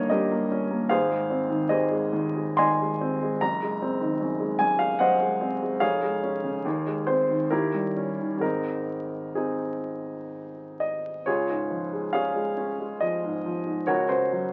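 A warm baby grand piano sits up front, playing alone throughout this short, romantic classical character piece. Its lyrical, passionate mood unfolds in 3/4 with a rubato feel, drifting between roughly 61 and 77 BPM. The piece opens in Ab major with harmonies such as Eb7/G, Ab and Eb7b9 spanning a range from F1 to C6, then moves to Db major at 11.3 s for a new section. The natural piano tone is heard through a moderate studio ambience and the crackle of a very old 78 rpm record, giving the sound an aged, intimate character. Cut from a longer piece, it ends at 14.5 s on a rootless Ebm7/Db chord.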